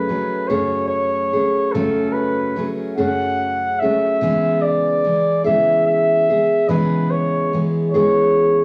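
A home cassette recording with a small room's light reverb gives this gentle, hopeful acoustic folk piece a soft, intimate haze. At 48 BPM in a slow 6/8, a distant, roomy flugelhorn sings a classical-style solo melody up front, while a dark, full-bodied jumbo steel-string guitar picks the accompaniment, finger squeaks audible, moving from F#madd9 to C#m7 at 4.2 seconds. Both parts play throughout this 8.6-second passage cut from a longer piece.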